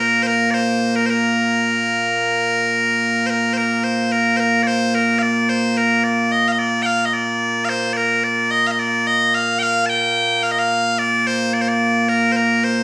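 A solo bagpipe sounds from the very start, bright and piercing, setting a proud, stirring tone in this short cut from a longer piece of Scottish traditional pipe music. The pipes play continuously and sit up front, carrying the tune in Bb major at 109 BPM in a straight 4/4. Their range stretches from Bb2 up to A5, with the tuning set at A4 = 439 Hz. A large studio reverb, wet with a 1.1-second decay, surrounds the instrument and lends it a sense of space, as if played live in one room. The opening phrase runs to 3.3 seconds before the same section returns and carries on to the close at 12.8 seconds.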